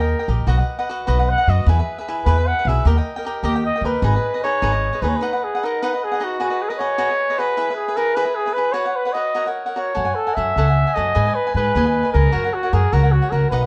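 Festive and proud, this mariachi-flavored piece of Mexican folk music moves at 101 beats per minute in a straight 6/8, set in G# minor and cut from a longer performance. An up-front solo trumpet with a vintage, classical-style tone carries the melody between F#4 and F#5 throughout. A bright, crisp picked cavaquinho supplies the accompaniment, while a woody, thumpy pizzicato upright bass on gut strings sits up front, dropping out at 5.1 seconds and returning at 10.0 seconds. The harmony travels through B, E and D# to G#m, then on to G#m7, F#sus4 and F#madd9 in the second section, which begins at 5.2 seconds. Light reverb and a dark, warm production give the ensemble a mellow glow.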